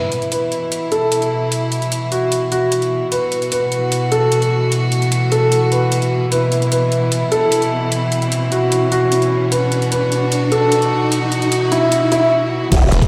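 A rich chamber string section holds sustained chords up front through this menacing, chaotic cut from a heavy wobble dubstep track. Its bowed ensemble tone is earthy, with a light vibrato and a smooth top, and it pumps under sidechain compression. Over it, a dark, mellow baby grand piano carries the melody through a low-pass filter and dub echo, with a filter sweep across the build-up until the piano stops at 12.3 s. An electronic riser sits in the background while a dubstep drum kit with metallic hats and crash cymbal keeps a half-time feel, tape-warm and bathed in studio reverb. After a brief break, the impact lands at 12.7 s, bringing in a knocking electronic kick and a growling, wobbling bass with chorus and overdrive, before a snarling, detuned sawtooth bass with distortion and a moving notch takes over at 12.9 s. The mix sits in a wet digital room ambience, as if played through a big sound system in a bare room.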